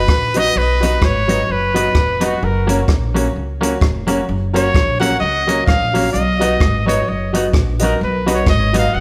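A warm, up-front trumpet solo with light vibrato and analog delay opens this cheerful, joyful ska excerpt at 129 BPM with a swung feel, over woody upright piano stabs, a thumpy pizzicato upright bass, a dry cocktail drum kit with punchy kick, hi-hat and rim click, and a clean, hollow-body semi-hollow electric guitar entering at 0.4 seconds, the band playing live together in a large studio room as the chords move from B to F# and back to B.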